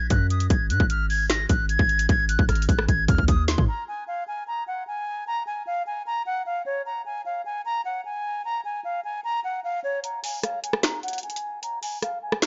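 A reedy, airy concert flute carries the melody throughout this melancholic, menacing half-time trap cut at 151 BPM, its straight, tongued tone softened by a low-pass filter and trailed by delay. A punchy, sine-based 808 with a noise layer and a trap kit of hard-clipped kick, woody snare, metallic hats and snaps sit up front until a drum fill leads into 3.7 seconds, where the flute plays alone. At 10.0 seconds the drums return with the kick muted while a filter sweep shapes the flute, all in a light reverb with a dark top end.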